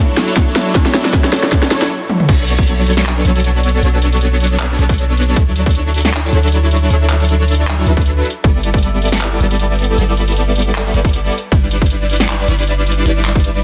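Lush and emotional, this future bass excerpt in B minor moves at 156 BPM with a half-time feel and a light 16th-note swing. A huge, detuned supersaw riff carries the harmony from the start, its sawtooth unison spread by a lush chorus, sidechain pumping and tape echo, while a moving notch shifts its colour over sustained Dmaj9, Bm9, G69 and Em7/G chords. A layered pop drum kit with a fat snare, handclaps, toms, crash and ride cymbals and warm hats sounds overdriven and re-recorded in a small room, sitting beside an up-front, hard-clipped electronic kick. The opening build-up brings a drum fill before a brief stop at 1.9 seconds, and the drop lands at 2.3 seconds as a deep, boomy 808-style bass enters with a sine body, a noise layer and sidechain pumping. Light reverb and digital ambience surround a dense, heavily limited modern master.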